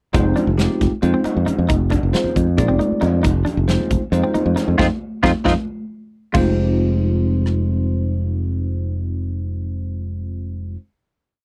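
A growly, up-front fingered electric bass drives this short, nocturnal and slick piece of electric jazz fusion, playing a syncopated riff at 270 BPM (counted in eighths) in 7/8 with a straight feel, centred on F dorian over an Fm7 chord. Beside it, a bell-like tine electric piano with lush chorus pushes drop-2 voicings, while a clean, picked electric guitar, compressed and twangy with analog chorus, repeats a short ostinato of stabs. A modern studio drum kit sits mid-forward with bright cymbals, a medium-tuned snare, punchy kick and rim clicks, and ringing, high-tuned congas played with soft hands sit distant in the background. The band hits an accent from 4.8 seconds, with the electric piano adding a fill just before the groove gives way at 6.3 seconds to a held final chord. Guitar, congas and drums drop out soon after, leaving the electric piano and bass to ring until 10.8 seconds. The sound is dry and close, in the manner of a 1970s studio recording.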